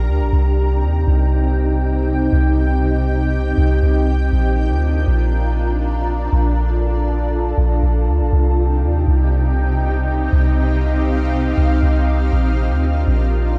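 Blissful and dreamy, this short cut from a longer atmospheric cloud-rap track moves in a half-time feel, with a shimmering ambient pad holding sustained chords that alternate between C minor and B-flat. The pad sounds ethereal and granular, its slow attack and long release bathed in chorus and its own reverb, while a soft, round 808-style bass sits up front with deep, decaying tones beneath it. Both parts play throughout, captured in a dry, gritty hardware recording with a cassette tape character.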